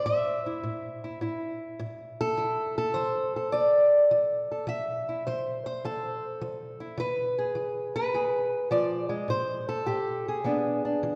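A lone fingerpicked acoustic guitar opens this brief cut from a longer piece of acoustic country blues, its old ladder-braced body giving a woody, boxy tone through dark, aged strings. Set in 4/4 with a strong swing on the eighth notes, the playing feels soulful and smoky. The guitar sits up front yet is bathed in a lush concert-hall reverb, so each note blooms into a long, churchy tail. The harmony moves from A minor to Fmaj7, then darkens on an E7b9 before a brief chordless passage at 9.3 seconds and a final E7 at 10.4 seconds that leaves the phrase hanging. The whole fragment lasts just over eleven seconds and covers a span from low A2 up to E5.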